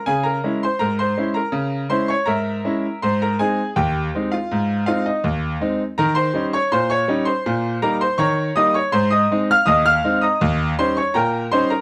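A straight 2/4 pulse at 81 BPM drives this jaunty, playful ragtime passage in Ab major, cut from a longer piece and tuned to A4 = 438 Hz. A solo grand piano, brilliant and smooth with a vintage character and long sustain, sits up front and spans Eb2 to F6, moving from Dbm through Ab and Eb7/Bb before closing on Eb7 at 10.4 seconds. A moderate studio reverb gives the 11.8-second clip a touch of room.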